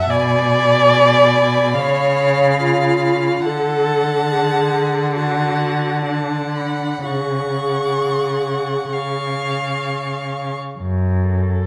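Solemn and elegiac, this slow romantic movement for string quartet unfolds with rubato at 57-73 BPM in 4/4, moving through G#dim/B, C#7, D and C#sus4 before resting on F#m at 10.8 s. The first violin sings a soft-attacked, expressive melody with vibrato and portamento, while the second violin holds a smooth, even, distant line beneath it. The viola adds a warm, gliding accompaniment and the rich cello carries the bass with expressive vibrato, all in a moderate recital-hall reverb, in this fragment from a longer piece where the viola sounds last, until 11.7 s.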